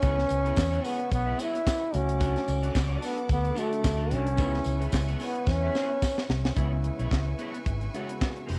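A breathy, whispered trombone carries the melody up front in a sultry, jazz-style solo with soft attacks, scooped notes and light vibrato, soaked in tape echo until it drops out at 6.3 seconds. Beneath it, this danceable disco cut in C# phrygian moves at 110 BPM with a swung sixteenth feel, driven by an up-front fingered electric bass with an amped tone and a tight, dry funk kit of high-tuned snare, kick, hi-hat and handclaps, which plays a fill from 5.5 seconds. A dark, slightly broken-up picked electric guitar with ensemble chorus joins in, while a warm baby grand piano, a lush bowed string section and a jingly vintage tambourine sit further back, all heard through a small room and the lo-fi character of a cassette home recording.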